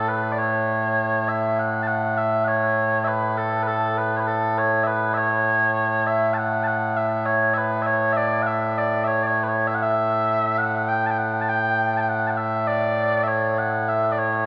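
A straight, steady 4/4 pulse at 100 BPM carries this short passage of Scottish traditional pipe music, cut from a longer piece. A single set of small bagpipes plays alone from 0.0 to 14.5 seconds, spanning A2 to A5 in A mixolydian and tuned to A4 = 441 Hz. Their tone is mellow and sweet, a continuous sound with vibrato, and tape echo trails behind it. The pipes sit up front, yet the listener seems placed further back in a recital hall whose wet reverb lingers for about 1.6 seconds. The mood is ceremonial and proud throughout this solo performance.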